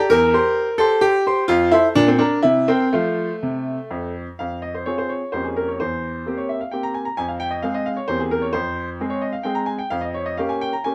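In a 3/4 at 130 BPM with a flexible rubato feel, this playful, elegant classical-period sonatina passage unfolds on a solo baby grand piano, spanning E2 to C6 with a brilliant, open tone and long sustain that sits up front. It opens in F major, then darkens to F minor at 4.4 s, where the harmony leans on shadowy half-diminished and dominant colours before the fragment ends at 10.9 s. Close, detailed microphones and very little reverb give a dry, intimate sound to this short piece cut from a longer work.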